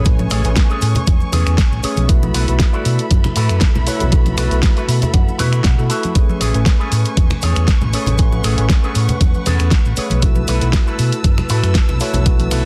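A dense, heavily limited modern master wrapped in digital ambience opens this feel-good, groovy nu-disco cut from a longer piece, moving at 118 BPM in 4/4 with a light 16th-note swing in A major. Up front, an overdriven electronic kick knocks alongside a round, amped fingered bass, while a pop drum kit adds a fat snare, finger snaps and warm hi-hats, and close, dry maracas and congas sit in the background. A twangy envelope-filtered guitar picks a bright riff bathed in lush chorus and tape echo, and a clean electric guitar fill cuts in from 4.6 to 6.2 seconds. A tine electric piano played through a combo amp accompanies beneath, pumping with the sidechain, as does a rich, bowed violin section holding expressive sustained chords with vibrato and a gritty vintage 12-bit sampler edge. The harmony alternates between Amaj9 and B7sus4 throughout the clip.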